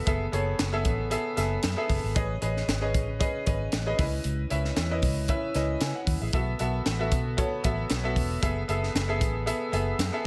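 A clear, worn grand piano bathed in lush chorus carries the chords from F#m11 through Amaj9#11, C#m9 and B7sus4 back to F#m11, over a dark, round, foam-muted electric bass and a punchy, up-front acoustic fusion kit with a high-tuned snare and gated reverb, giving this short cut of polished 1980s jazz-funk pop a nocturnal, urban mood and a slight swing on the sixteenths.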